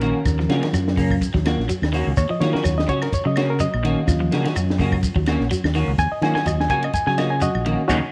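A light reverb and small-room ambience frame this short afrobeat excerpt, which holds on an Ebm7 chord in Eb minor at 126 BPM in 4/4, with a 55% swing on the sixteenths giving it a funky, defiant strut. Up front, a barky, reedy electric piano takes the solo across the whole passage, its bright, lightly overdriven tone pushed through built-in speakers. A round, amped fingered bass sits just as forward, while a compact cocktail drum kit plays hi-hat, kick, ride and snare with a punchy kick, a high-tuned snare and a dark, rolled-off top. Two guitars fill in underneath: one at the edge of break-up plays twangy picked arpeggios colored by a phaser, and a clean semi-hollow guitar adds hollow-bodied stabs through an analog chorus. A grainy, mellow shekere runs throughout, woody claves join quietly in the background at 0.3 seconds, and the band hits an accent together at 7.9 seconds.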